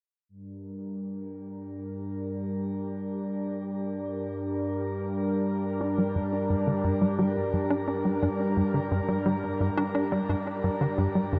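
This ambient passage, cut from a longer piece, opens at 0.3 seconds with a lush unison pad holding sustained chords on G minor, its detuned sawtooth and square voices thick and bright, placed up front and treated with chorus. A filter sweep moves across this analog synth pad for the whole passage, lending an expansive, hypnotic mood at 87 BPM in a straight 4/4. At 5.8 seconds a tight sequencer bass enters with a punchy, driving riff, its filter-plucked tone mixing sawtooth, square and triangle waves with a fast attack and a mellow decay, treated with analog chorus and delay. The pad and bass play together until the close at 11.4 seconds. A shimmering reverb with a 6.4-second tail bathes the sound in a long, wet space.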